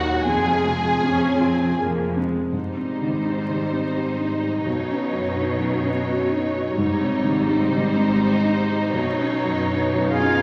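A felt-muted upright piano, soft and intimate, opens this tender, hopeful excerpt of a cinematic film score alongside a full string ensemble, moving in a rubato 3/4 at around 78-86 BPM in Ab major. A rich violin section carries the bowed melody with vibrato and a soft attack, while a second violin section sits close and up front on a smooth, even counter-line. Beneath them, a lush viola section murmurs in the background and a focused cello section holds the bass, joined at first by a very quiet double bass section that drops out at 2.5 seconds. The harmony drifts from Fm into a gently rocking alternation of Abmaj7 and Badd9, giving the passage an emotional, hopeful quality. Just before the cut, at 10.1 seconds, an airy, distant concert flute touches a single tongued note, and the whole piece is bathed in a wet scoring-stage reverb with a layer of vinyl crackle.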